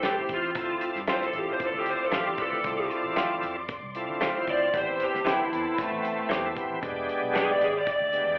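A live club gig heard through the venue's PA takes on a telephone-like cast, with a moderate club reverb around the band in this brief section of a longer piece. It's a mournful, brooding straight-eighth soul blues in A minor at 115 BPM, moving from Am7 to Dm7 and back before landing on an E7#9. The lead guitar carries a solo throughout, a dark, lo-fi, overdriven tone from a small cranked amp, picked and up front with slapback echo and digital delay. Beside it, a shouting tonewheel organ with key click, chorus vibrato and a slow rotary speaker fills the accompaniment, while a direct-recorded clean electric guitar adds bright, compressed stabs until 7.5 s. A foam-muted fingered bass sits round and low under a dry 70s drum kit of hi-hat, tight kick and medium-tuned snare. From 0.6 s a muted, veiled string section holds bowed sustained chords in the background, con sordino with a smooth top.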